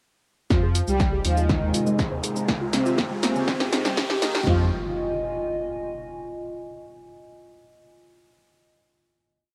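At 0.5 s an overdriven techno drum kit and a punchy analog drum machine launch a driving, cinematic melodic techno build with a round analog bass, a dusty pluck arpeggio carrying lo-fi 12-bit grit, and a brassy synth brass riff doubled an octave lower by a smooth soft supersaw. A nostalgic warbly tape-like pad soon joins, followed by a moody dark analog pad, a very quiet string-like bowed-like drone and, from 1.7 s, a riser and impact, before the music settles on a final chord at 4.5 s inside a small, cassette-worn booth.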